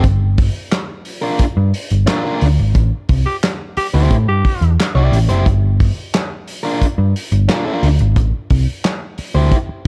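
A round, dark hollow-body electric bass sits up front in this driving, hypnotic funk groove at 89 BPM in G dorian, moving between Gm7 and Am7 over a tight-kicked soul drum kit with handclaps, hi-hat and a medium-tuned snare, while an overdriven electric guitar plays accompaniment, a raspy, gritty tenor saxophone briefly holds a G4 from 3.3 seconds during a band accent, and the whole sits in a small room with a dark, warm production.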